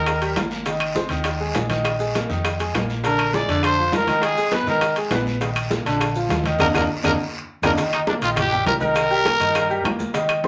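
In a wet club reverb, this festive, sunny salsa excerpt in Eb major at 202 BPM has a growling, gritty trumpet up front that blurts briefly at the start and takes the melody from 3.0 seconds, over a bright, woody upright piano and a dark, round hollow-body electric bass, while tight high bongos, ringing congas and metal-shell timbales, woody claves, grainy maracas and a raspy guiro that drops out at 7.7 seconds fill the background, with a band accent and drum fill landing just before the section restarts.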